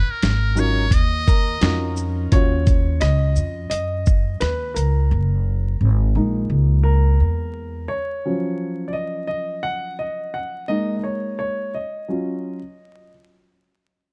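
Jazz-hop in Eb minor at 86 BPM with a swung sixteenth feel, this nocturnal, smoky excerpt opens with a buzzy metal-muted trumpet phrase with light vibrato until 2.0 seconds over a woody, growly pizzicato upright bass and a gritty, compressed sampler-style drum kit with thumpy kick, rim click, shaker and hi-hat, before an intimate grand piano with audible action noise and short sustain takes a solo from 2.3 seconds through lush minor-ninth and six-nine chords, all wrapped in a haze of vinyl crackle.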